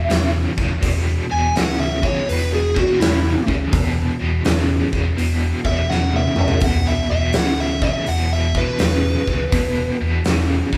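A biting, bright lead guitar takes a picked, overdriven solo up front across this short cut from a longer blues rock and southern rock piece, swaggering and driving at 83 BPM in 4/4 with a swung eighth-note feel. Beneath it, a double-tracked overdriven rhythm guitar with tremolo churns out a low riff, while a growly, amped electric bass and a big acoustic rock kit with a fat snare, tight kick, hi-hat and toms drive the groove, the drums throwing in a fill at 5.9 seconds. The trio sounds like a band playing live in one room, with moderate studio reverb and a bright stone-room character on the kit.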